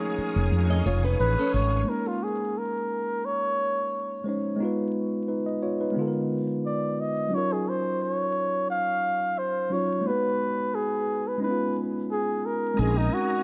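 An 88 BPM groove in 4/4 with a light sixteenth-note swing underpins this sultry, introspective R&B passage in Bb minor, cut from a longer piece. A worn, slightly out-of-tune tine electric piano carries the accompaniment throughout, clean and up front, while a round, dark fretless bass anchors the low end. In the opening seconds, a tight jazz-style horn section punches stabs with octave doubling, and a fingerpicked flamenco guitar adds a brief acoustic second line. A clear tonewheel organ holds chords through a fast rotary speaker with chorus vibrato and key click, and returns near the close. From 1.2 s, a smooth-topped flugelhorn with light vibrato takes the solo melody in a pop style over rich extended minor harmonies, and the production stays dark and warm, with light small-room reverb and a bed of vinyl crackle.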